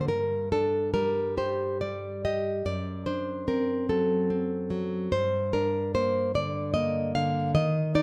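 A wet recital-hall reverb surrounds this brief, melancholic and intimate romantic excerpt, in which a solo nylon-string guitar with fresh strings and a full-bodied, deep classical tone sits up front, fingerpicked in a rubato 6/8 with audible finger squeak as it moves from G5 through D7/F# to Gm before the cut at 8.0 seconds.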